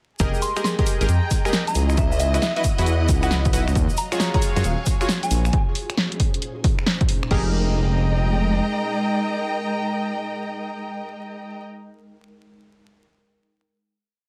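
A swung two-step UK garage groove at 135 BPM bounces under a soulful piece, with a punchy electronic kick and analog drum machine skipping through swung hats, snaps, snare and crash until about 7.4 seconds, joined by a grainy hand-played shaker until about 5.5 seconds. Meanwhile a dark, rumbling detuned saw bass drives a syncopated line, bright chorused chord stabs punch out a rootless riff, distant bowed strings pump beneath, and a soft FM bell adds short phased phrases. An ethereal airy pad enters at 5.0 seconds to carry the final Fm11 chord to 11.6 seconds over a dense, limited master dusted with vinyl crackle.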